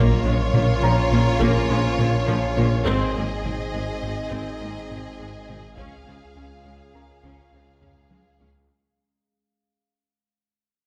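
A rubbery, nasal square-bass riff drives this tense, futuristic hybrid orchestral and electronic film-score cue at 103 BPM in 5/4, moving through Bbm, Ab and Db over a thick, menacing detuned saw bass, a dark tuba, cellos and lush double basses. Above them, lush vibrato violins carry the melody and a second line while intense violas accompany, distant French horns and a very quiet, warbling lo-fi pad hold sustained chords, and a piano texture enters at 0.8 s. Saturated taiko drums join at 0.5 s and finish with a fill from 7.8 s, the whole cue sitting in a wet scoring-stage reverb and fading out throughout.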